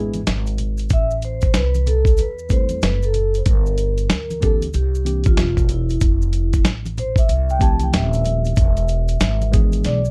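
Swung sixteenths drive this mellow, cool jazz-hop groove in 4/4, carried by a gritty, sampler-style drum kit with a thumpy kick and fat snare sitting up front. Pizzicato upright bass, woody and growly, shares the foreground. Quiet congas and maracas, played with hard hands, stay close and dry in the background. After a brief break, a vibraphone solo with soft mallets takes over at 0.9 seconds, its metallic ringing tone colored by slow motor vibrato, a vintage band-limited quality and a slapback echo. Beneath it, a worn, slightly out-of-tune tine electric piano supplies clean, direct accompaniment through chords moving from Am7 to Gm, C7 and Fmaj9 before returning to E7. A drum fill at 9.8 seconds closes this dark, dry-sounding fragment of a longer piece.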